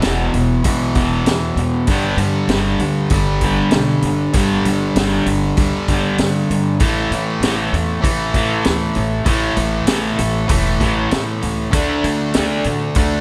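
A straight 4/4 pulse at 98 BPM drives this gritty classic rock excerpt, where a bright, up-front cranked stack guitar and a second crunchy overdriven guitar both play the riff through power chords on E, G, A and D, over a vintage acoustic drum kit with a punchy kick, high-tuned snare and rolled-off top, and a woody, growly pizzicato upright bass that enters at 0.1 seconds, all set in light reverb.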